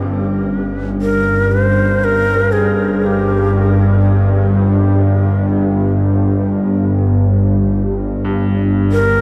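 A straight, slow 4/4 pulse at 61 BPM underpins this ominous, cavernous dark ambient drone in G minor, cut from a longer piece, where an up-front, string-like bowed drone, tense and nasal with a detuned sawtooth edge, vibrato and a noise layer, holds low from the start, a brilliant, polished grand piano fades in with background arpeggios through shimmer reverb and delay, and from 1.0 seconds a close-miked, breathy bamboo shakuhachi with vibrato sings the melody up front, all set in a huge, wet reverb within a dark production.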